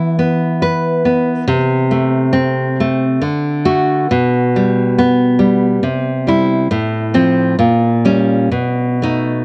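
A nylon-string guitar carries this romantic solo piece on its own, fingerpicked and up front with a full-bodied, deep classical tone and the occasional finger squeak audible in the close sound. The mood is passionate and melancholic, moving in a flexible rubato within a triple metre. Its range stretches from A2 up to B4, and the harmony travels from an opening E5 through Am/C, D and G/B toward C and F/A, darkening on an A#m6 before settling on B7 at 8.5 seconds. The recording is dry and intimate in a 1970s studio manner, touched by light reverb. This short excerpt, cut from a longer piece, lasts just 9.4 seconds.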